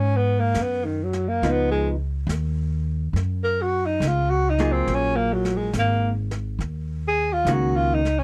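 A breathy tenor saxophone and a woody pizzicato upright bass open this wistful, intimate jazz ballad together at 0.0 seconds. The saxophone carries the melody as a solo throughout, using a hushed subtone, gentle vibrato and scooped notes with a soft attack, and it sits up front in the mix. Brushes on the snare and hi-hat join quietly at 0.5 seconds, adding a relaxed swing in 4/4. At 1.4 seconds a clean, compressed electric hollow-body guitar enters with dark, picked accompaniment over lush chords such as Db9 and Gbmaj9. The sound is dry and close, like a 1970s studio session, and the passage is cut from a longer piece.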